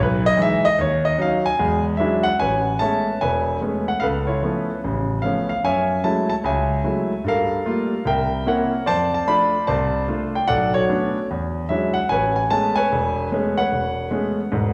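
Solo jazz in A major at 148 BPM, swinging and warm, this excerpt from a longer piece features a concert grand piano with deep bass and a natural, up-front presence, ranging from E1 to B5. The harmony moves through rich extended chords such as Emaj7, C#7alt, Gm9 and C7b9 before settling on Amaj9 at 12.1 seconds. A wet recital hall reverb surrounds the piano.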